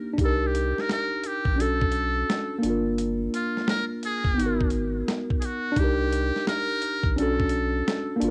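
The sound is that of a home recording on cassette, set in a small room with a moderate touch of reverb. This short, melancholic and hazy lo-fi hip hop passage, cut from a longer piece, has a swung sixteenth-note feel. A worn, slightly out-of-tune tine electric piano sits up front and sounds alone at 0.0 s, carrying the chords through tape coloring. At 0.2 s the rest of the band joins: a gritty, compressed sampler-style soul drum kit with a thumpy kick, medium-tuned snare and hi-hat, plus a deep, round dub sub bass. Over them, a muted trumpet plays a buzzy, breathy jazz-style solo with light vibrato, lifted by analog delay and plate reverb. The harmony drifts from Cm9 through Bm9, Gm7 and Abm9 before returning to Cm9 at 5.8 s.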